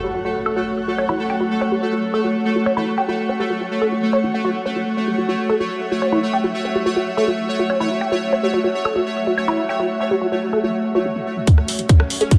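A pulsing, detuned gated texture sits up front with sustained chords, throbbing to the sidechain pump alongside a dark, woody wave-folded pluck riff treated with chorus and tape echo, while a cloudy, evolving granular pad shimmers softly behind them. This alien, hypnotic psychedelic trance cut in F# minor moves at 143 BPM in a straight 4/4, and a tight electronic kick and a garage kit of bright, filtered hi-hats and rim clicks arrive only at 11.5 s. A faint electronic riser slips in at 12.1 s, all within a moderate digital plate ambience.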